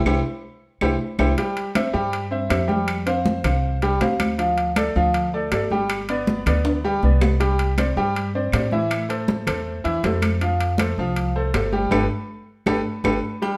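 A bright, polished upright piano accompanies this sunny, danceable salsa excerpt, playing up front with long sustain over a chord cycle that moves from C through Fsus2, Dm and G to Cadd9, Am, F and Gadd9. A dark, thumpy pizzicato upright bass sits close beside it, while ringing high-tuned congas, metal-shelled timbales and agogo bells, and distant woody claves fill out the percussion, with band accents at the opening and near 12 seconds and drum fills at the opening, around 7 seconds and near the end. The live band shares a moderate stone-room reverb that gives the ensemble a natural, lively space.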